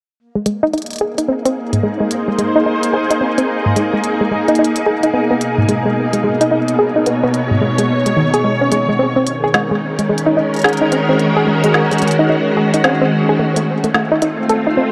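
Wistful and glitchy, this excerpt of IDM moves at 109 BPM in 4/4 with a 62% swing on the sixteenths, set in Ab mixolydian and tuned to A4 = 444 Hz. A soft, round pluck enters first at 0.4 seconds with gentle, nasal arpeggios, carrying chorus and tape echo while a filter sweep runs across it for the whole passage. An organic electronic drum kit follows with a woody snare and crisp hats treated with delay, sitting lower in the mix than the melodic parts. At 0.9 seconds a silky vintage string machine joins with slow-attack sustained chords and a long release, treated with ensemble chorus and sitting up front. The harmony moves from Ab through Badd9 and Ebm to F, all bathed in a huge ambient reverb and the warbly pitch drift of worn cassette tape.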